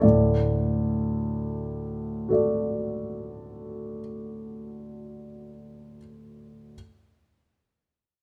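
This is a romantic classical character piece for solo grand piano, passionate and hopeful in mood. It moves in a slow, rubato 6/8 at about 51-55 BPM, counted in dotted quarters, and rests in D major. The piano plays alone through the whole 6.8-second excerpt, spanning D2 to D5 with a smooth, vintage, up-front tone captured by close, detailed microphones and framed by a moderate recital hall reverb.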